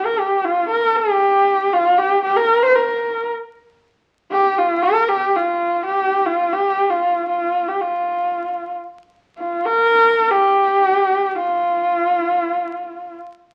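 Vast and galloping, this short Mongolian folk passage, cut from a longer piece, features a lone bowed horsehead fiddle played up front with a nasal, husky tone, expressive vibrato and gliding portamento, moving into a new section at 9.0 seconds, all set in moderate studio reverb and heard through the crackle of a very old 78 rpm record.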